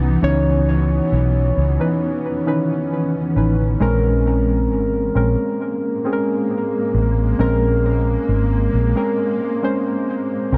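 A straight 4/4 pulse at 67 BPM carries this late-night, sensual R&B excerpt in Bb minor, moving from Dbm9 to Bbm9 at 3.8 seconds. Up front, a foam-muted vintage fingered electric bass sounds round and punchy, while muted, felt-like synth keys play soft, intimate accompaniment with fast attacks that decay, colored by chorus, tape echo, ring modulation and a filter sweep. Beneath them, a detuned granular cloud pad holds blurred, evolving chords in its own built-in reverb, and the whole mix is echo-heavy with a light reverb.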